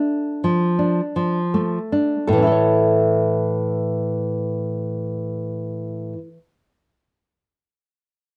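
A romantic, lyrical duo for two nylon-string guitars in a rubato 12/8, cut from a longer piece, easing to a slower pace over the first 2.3 seconds as the harmony moves from D minor to A, with a small, fingerpicked melody guitar resting on A4 in the background under plate reverb while the dark, fingerpicked classical accompaniment sits up front, finger squeaks audible, all in a light-reverb, shadowy, warm production.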